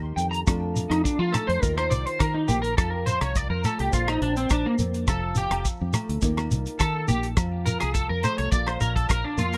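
This joyful, carefree highlife guitar band clip moves at 104 BPM in a straight 4/4 in F mixolydian, cut from a longer piece. A dark, woody acoustic guitar with old strings and a boxy tone is fingerpicked as accompaniment, paired from 0.0 s with a round, foam-muted fingered electric bass. From 0.2 s an up-front, twangy electric guitar at the edge of break-up plays arpeggios through ensemble chorus and tape echo. It sits over a damped 70s drum kit with a tight kick, rim click, hi-hat and a rolled-off top, and a grainy, saturated shekere. Ringing agogo bells sit quietly in the background from 0.5 s, when a guitar solo also begins over chords cycling between F, Ebsus2 and Bbsus2. The sound is dry, with little reverb and some lossy compression artefacts.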